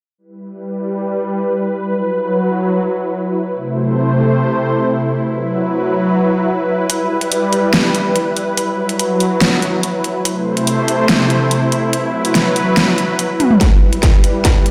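Chaotic and aggressive, this heavy wobble dubstep excerpt at 143 BPM in a half-time E minor feel opens with a lush, detuned supersaw pad pumping through sustained chords under a low-pass filter sweep, joined at 6.9 seconds by an overdriven dubstep kit with a huge snare, hi-hats and toms, before a distorted, tape-toned electronic kick arrives at 13.6 seconds for a drum-fill build-up and another filter sweep, all washed in a large, lush hall reverb.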